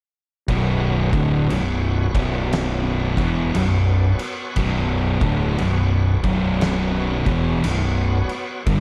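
At 0.5 s, a slow, brooding and hypnotic stoner and doom metal groove in B minor at 59 BPM, with a swung feel, enters together: two thick, picked fuzz guitars churn a distorted riff from the background, a round, overdriven fingered bass sits beneath them, an oversized low-tuned drum kit hits with a punchy kick, fat snare and crash cymbal in a gritty, saturated stone-room sound, and a bright, shouting tonewheel organ holds sustained chords with key click, chorus vibrato and a slow rotary speaker, in a dry, dark production cut from a longer piece.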